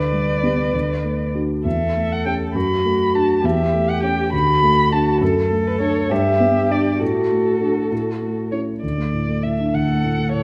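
A muted violin, a muted cello and a dark concert grand piano begin together in this quick, graceful and spirited classical-period movement for piano trio, cut from a longer piece. It moves in a straight 6/8 at 67 BPM counted in dotted quarters, in D major with the tuning set to A4 = 445 Hz. The violin carries the melody up front, its con sordino tone veiled and smooth on top, with vibrato, soft attacks and portamento. The cello plays a second line in its upper register, shadowy and hushed, with light vibrato. The piano accompanies with a mellow sound and deep bass, moving through G over D, A7 over E, D over F# and G before reaching A and turning to a new section on D at 8.8 s. A reverberant recital hall surrounds the trio, and all three play through to the cut at 10.4 s.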